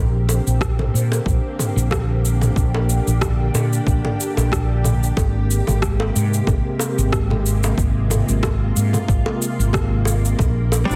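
Sunset chillout with a blissful glow, built on a woody, growly fretless bass up front with lush chorus, silky string-machine chords with ensemble chorus drifting between Bb69 and Abmaj9, an overdriven deep house kit of cabasa, rim click and toms joined by tight, high-tuned bongos and a deep background kick, and a dark, clean hollow-body jazz guitar that enters only at 10.9 seconds, all set in light digital ambience and a dense, heavily limited master.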